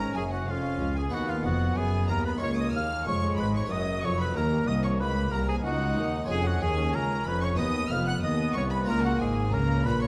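A clear, close-miked oboe with light vibrato carries the melody alongside an intense violin section in this lively, festive baroque-style concerto movement at 93 BPM in F# major, while a smooth second violin line sits in the background, a distant viola section and a round, plucked harpsichord supply the accompaniment, and a focused double bass section and a soft-attacked, expressive cello section with portamento anchor the bass under a wet recital-hall reverb.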